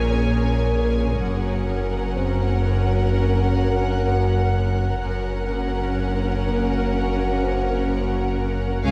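A slow, uneasy suspense cue at 63 BPM opens with everything at once: a violin section carries a soft, sul tasto melody over a second violin line and a background viola section, while a distant, mellow French horn section and a shimmering, detuned ambient pad with chorus and built-in reverb hold sustained chords over a Bbm7 moving to Gb at 1.2 seconds. Underneath, a bowed cello section, a dark double bass section and a pure sine sub bass drone form a deep, heavy low end, while a very quiet fingerpicked concert harp riff rings and a felt-muted upright piano adds a hushed, intimate texture. The dark, warm production sits in a moderate recital hall, giving this eerie 8.9-second cut from a longer film score a close yet roomy sound.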